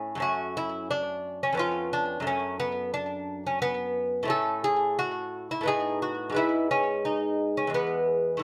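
Classical baroque-style dance in 3/4, serene and lilting, played with a gently rubato feel and tuned to A4 = 436 Hz in this short fragment of a longer piece. A solo lute, fingerpicked on nylon double strings with some octave-doubled courses, sits up front with a delicate, warm tone, a slapback echo and light reverb, ranging from E2 to A4. The harmony moves from F#m through C#7/E# and A to a G#madd11 before resting on E at 7.7 seconds.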